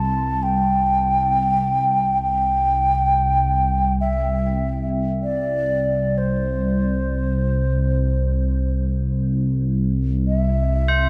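A mellow bamboo xiao carries the melody through this peaceful, free-time meditation piece in C major pentatonic, its airy, tongued tone shaded with vibrato and a tape echo, sounding both up front and distant. Beneath it, a deep, moody ambient pad holds a low C drone for the whole 11.1 seconds, built from detuned sawtooth and sine layers with a sub octave, a slow attack and long release, and thickened by chorus and its own reverb. Near the very end, at 10.9 seconds, a tubular bell struck with a plastic hammer rings out a bright, metallic, solemn C. The production is dark and warm, set in a wet cathedral reverb that lends the whole spacious scene a long, hanging tail. This is a short excerpt cut from a longer piece.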